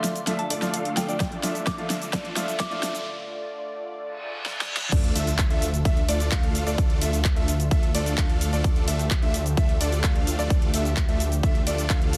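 Festival progressive house in D minor at 129 BPM, this emotional, anthemic excerpt builds over a held D minor chord with huge detuned supersaw chords, a very quiet lush pad, a dark filtered grand piano arpeggio, a clear piano accompaniment until 2.9 s and a soft FM bell melody, with overdriven big-room drums, a punchy up-front kick entering at 1.2 s and a riser and reverse cymbal, before the drop at 4.9 s brings in a thick, menacing detuned saw bass pumping under an impact.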